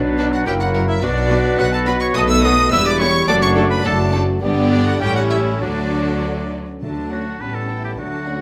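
Rich, close violins carry an expressive, vibrato-laden melody through this spirited, lively excerpt from a quick classical-period orchestral movement in a flexible, rubato 2/4, joined by an airy, hollow flute, a clear oboe, a bright clarinet and a softer second violin line. Beneath them, a very quiet viola section and a dark, distant bassoon fill in the accompaniment. Lush cellos and an intense double bass section anchor the bass, while mellow horns hold sustained chords and roomy trumpets add stabs until 6.5 seconds. Soft-malleted timpani enter very quietly at 6.8 seconds, all set in a moderate recital-hall reverb.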